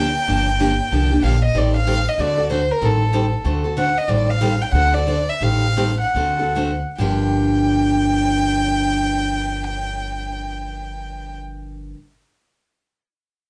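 A swinging, virtuosic excerpt of acoustic string swing in G minor opens with a bowed violin playing an airy, sul tasto melody with light vibrato, alongside a bright, picked steel-string guitar and a woody, pizzicato upright bass on gut strings, moving at 133-189 BPM from Gm7 through alternating Am7b5 and D7 chords, slowing down between 4.1 and 7.0 seconds before returning to Gm7, all set in moderate studio reverb and heard from further back in the room, with the violin stopping at 11.4 seconds.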